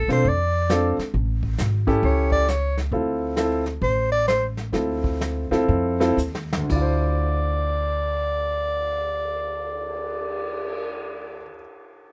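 Swinging and late-night in mood, this short cut from a longer piece is small-group jazz in the swing and bop vein, moving at roughly 115-135 BPM in 4/4 with a lilting swung eighth-note feel in D minor. A breathy soprano saxophone carries the melody up front with a whispered, subtone sound and soft attack, giving the solo an intimate, mellow quality. Beside it, a clear grand piano supplies accompaniment, its natural tone carrying faint action noise, while a woody pizzicato upright bass anchors the low end. A vintage brush drum kit sits further back, dark and smooth with a rolled-off top, mixing brushed snare, hi-hat, punchy kick, crash and cymbal swells. The harmony moves from a rootless Bbmaj7 through A7 to Dm7 at 2.9 seconds, where the tempo begins to slow; a drum fill at 6.2 seconds leads into a new section at 6.7 seconds. Light reverb gives the group a small, close-knit space.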